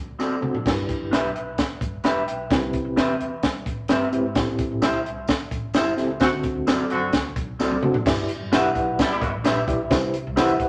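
A straight 4/4 groove at 130 BPM drives this danceable, uptempo 1960s-style soul clip in G major, where a compact cocktail kit with a punchy kick, high-tuned snare and dark cymbals sits up front alongside a woody, growly pizzicato upright bass, twangy slightly broken-up guitar stabs with spring reverb, a reedy, worn electric piano with fast tremolo, a jingly tambourine in the background, and a warm horn section with light vibrato that enters at 6.2 seconds for a band accent and plays until 9.3 seconds, all in a wet club reverb.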